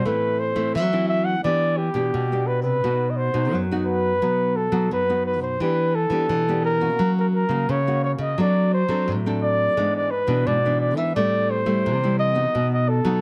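Straight 4/4 at 86 BPM drives this lively, sunny samba and choro fragment in E minor, where an up-front, mellow flugelhorn plays a smooth-topped, classical-style solo melody over a dark, fingerpicked nylon-string guitar accompaniment with audible finger squeak, while a second, warm nylon-string guitar fingerpicks the bass line, all in light reverb as the harmony moves from Am and Em7 through B and F# to D7/F# and E7/G#.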